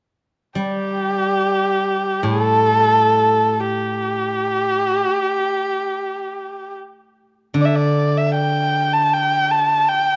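Chinese traditional chamber music, pastoral and graceful, in which a dark, intimate erhu carries the melody from 0.6 seconds with light vibrato, soft attacks, portamento and an airy bow, over the silvery, ringing accompaniment of a steel-string zither played with fingerpicks in a lower register, both up front in a recital hall's moderate reverb with a warm production, cut from a longer piece.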